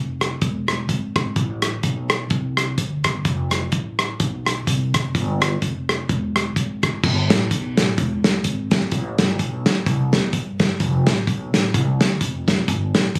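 Swung eighths at 127 BPM in 4/4 drive this soulful, hopeful uptempo gospel fragment, where a woody, growly pizzicato upright bass opens alone before a warm, up-front soul drum kit with tight kick, snare, rim click, hi-hat and dark crash cymbal joins at 0.2 s, the music moving into a new section at 7.0 s, heard through a phone recording of a compact booth with club reverb and compression.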